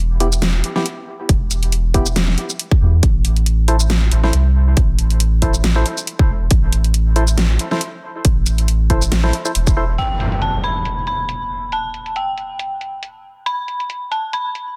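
A dense, heavily limited modern mix with light digital reverb frames this heavy, dark deep dubstep fragment at 138 BPM in 4/4, with a half-time feel and 55% swing on the sixteenths. A round, deep sub bass sits up front under the chords, which move from E minor to A minor at 3.0 seconds. Above it, hollow, organ-like stabs with a mellow sine-and-triangle body and a noise layer decay through lush chorus and dub echo. The layered electronic kit, re-recorded in a small room, brings low-pass-filtered hi-hat, shaker and a huge snare, and a punchy kick joins up front at 1.3 seconds. At 10.0 seconds the chords fall away as an electronic impact hits and an eerie, inharmonic FM bell takes the melody in the upper register, its detuned tone coloured by chorus, tremolo and dub echo, while the kit carries on beneath it.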